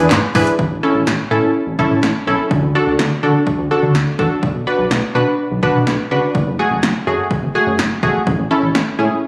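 A funky, mellow polysynth comp with a chorused sheen and a dark, glossy pulse-wave synth bass open this bright, upbeat synth-pop excerpt at 125 BPM in A major, moving from E7 through A, D, Bm and F#madd9 back to A. A punchy, overdriven analog drum machine sits up front with kick, snare, hi-hat and handclaps, its snare, clap and hats carrying a short room. The whole sound, captured on a phone in the room, is bathed in a moderate digital room reverb.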